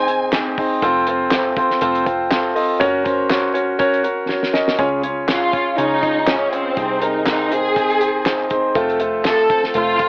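The recording has the lo-fi feel of a home cassette heard over AM radio, set in a booth with a short, moderate ambience. This hopeful, warm piano-driven pop fragment, cut from a longer piece, moves in 4/4 with a light sixteenth-note swing. A clear concert grand piano sits up front and carries the accompaniment throughout, its polished tone showing deep bass, long sustain and audible action noise, with a cassette-tape tint. Underneath, a vintage muted picked electric bass stays in the background, dark, round and amped, while a damped 70s drum kit plays dry and mid-forward with a fat snare, tight kick, hi-hat and handclaps, adding a drum fill at 4.3 seconds. A bowed studio violin section carries the melody with soft attack, vibrato and expressive ensemble phrasing, sounding up front yet distant, also colored by cassette tape. The strings offer only a brief touch at the very start, then return at 5.3 seconds to carry the melody over a new section as the harmony settles onto the home chord.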